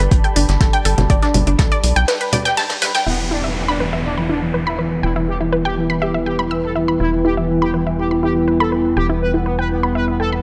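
Over a straight pulse, an overdriven, up-front electronic kick thumps briefly until 1.7 s, while overdriven electronic hi-hats and congas and a soft brush kit with a rolled-off top drop out by 3.1 s. Through this hypnotic, cinematic melodic techno cut, a tight, punchy sequencer bass, a lush detuned unison pluck arpeggio under a filter sweep, and a deep, dark ambient pad in the background all pump with the sidechain, moving from a Gadd9 chord to E minor. At 3.1 s a bold, brassy analog synth lead with delay takes the melody over a moody, nasal analog pad alongside an electronic downlifter, joined shortly after by a warbling vintage drone, all bathed in a lush hall reverb.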